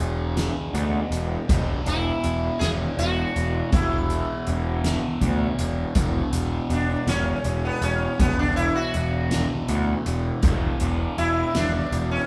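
A hypnotic, kaleidoscopic stretch of psychedelic rock in 6/8, cut from a longer piece, with a bright, buzzing sitar soloing up front throughout, its sympathetic strings shimmering over an E5 chord. Beneath it, a double-tracked fuzz guitar plays a distorted riff colored by phaser, while a punchy, overdriven picked bass sits up front alongside a soft-mallet drum kit with a fat snare and boomy kick. The band plays live together in a stone room whose moderate reverb gives the drums a big-room sound.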